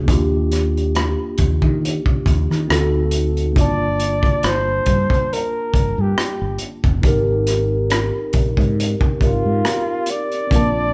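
A breathy, whispered flugelhorn enters up front at 3.6 seconds with vibrato and scooped notes, singing over mellow tine electric piano, a round fretless bass and a crunchy, gritty breakbeat kit of hi-hat, kick and rim click in this sensual, slow neo-soul R&B excerpt at 69 BPM, moving through Ebmaj9, D7b9, Gm9 and Abmaj9 in a live room before a twangy electric guitar note flickers in the background at 10.5 seconds.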